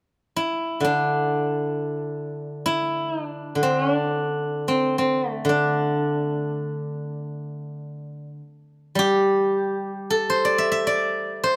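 A steel-string zither, played with fingerpicks and sitting up front with a silvery, ringing tone, carries this serene, flowing Chinese traditional solo in free time in the D shang mode, ranging from D3 to E5 from 0.4 to 11.6 seconds in a brief excerpt cut from a longer piece, captured with close, detailed microphones and light reverb.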